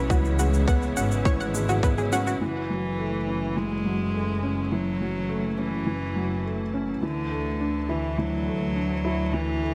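Hypnotic and moving, this short F# minor piano-and-strings electronica excerpt at 104 BPM sets a soft, felt-muted upright piano riff with audible action noise and tape echo over an earthy bowed double bass section and a lush background string section pulsing with sidechain pumping, while a bright analog pluck arpeggio and a shaker play only until about 2.4 s, a tight overdriven electronic kick dropping out a little earlier, when a biting, nasal solo cello with airy bow takes the melody up front as the strings fade in beneath a moderate hall reverb.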